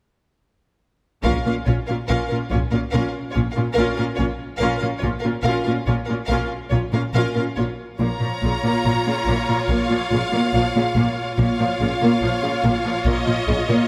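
A lush scoring-stage sound with moderate reverb frames this relentless, epic orchestral film-score cut from a longer piece in Bb minor at 71 BPM, where distant hard-stick taiko strike only from 1.2 to 2.9 s over a Bb minor chord of bowed strings, with expressive vibrato cellos and smooth, rich double basses anchoring the low Bb, warm violas adding portamento accompaniment, and a smooth-topped violin section carrying a second line throughout as a focused violin melody enters at 8.0 s.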